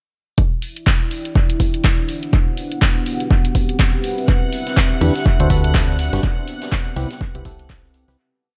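A swung four-on-the-floor groove drives this short, energetic and bittersweet piano house piece: a punchy, tape-warm electronic kick sits up front, while layered garage handclaps and hi-hats trail dub echo, and a deep, warbling sawtooth pad with chorus, built-in reverb and sidechain pumping moves slowly through Em7, D7, Gmaj7 and Cmaj7. At 4.3 seconds a clear, biting string section adds held high chords with light vibrato and the same pumping, along with a distant, roomy indie kit whose fat snare and hats form a very quiet looped breakbeat. At 5.0 seconds a hollow, mellow organ stab riff with subtle chorus and dub echo arrives together with a round, dark FM bass that follows the chord rhythm, and the echo-heavy, reverb-soaked mix begins fading out at 5.6 seconds.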